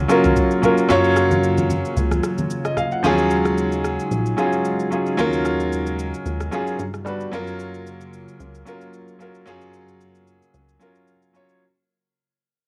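Amapiano at 112 BPM with a late-night, soulful mood, this short excerpt cut from a longer piece fades out across its full length as a bright, up-front grand piano with short sustain carries the accompaniment over a hollow, flute-like pad pumping under sidechain and chorus in the background, a punchy, funky analog bass pluck, an electronic afro-pop kit with a knocking kick, rim click and shaker, and low-tuned congas that play only until 2.9 seconds, all with little reverb and the piano, pad and drums tinted by cassette tape, moving from Gbmaj7 through Ebm11 and a brief Gmaj7 back to Gbmaj7.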